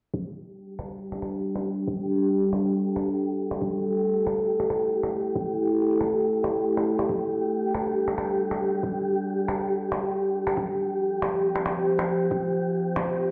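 A muffled, thumpy electronic kick opens this dark, meditative deep dubstep excerpt at 0.1 s, pitched down and compressed with a tape-warm, sampler-style sound and a small-room character. An airy, breathy wind-like noise layer tuned to G4 drifts in at 0.5 s with a slow attack and its own reverb, followed by pitched-down electronic finger snaps that share the kick's dulled, re-recorded tone. At 0.9 s the up-front drone arrives, a resonant sawtooth-and-sine sound with moving overtones, chorus and long release, holding sustained chords from F3 to A4 under a filter sweep that runs throughout. The harmony moves slowly through G5, A5, G5 and F5 over a half-time 4/4 pulse at 138 BPM, tuned to A4 = 438 Hz. A wet echo-chamber reverb and stone-room ambience, as though the track is playing on a big sound system in a bare space, blur the mix behind a low-pass filter.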